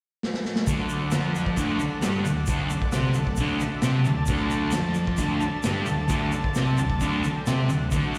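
Heard through a venue's PA with a touch of recital-hall reverb, this rowdy, raw garage rock excerpt has the rough immediacy of a live gig. The raw garage drum kit kicks things off with a fill at 0.2 seconds, its punchy kick, medium-tuned snare and crash cymbals sounding gritty and saturated in a small, pumping room, with a rolled-off top and an up-front placement. From 0.7 seconds the fuzz guitar joins the drums with a dark, double-tracked, compressed riff, its picked distortion thickened by slapback echo and sitting boldly at the front of the mix. Beneath it, a vintage combo organ holds clean, buzzy sustained chords colored by light vibrato and subtle chorus, and it steps forward with short fills, the first at 3.4 seconds. A grainy, bright tube shaker ticks away quietly in the background, adding a compressed, crunchy edge to the straight four-beat groove.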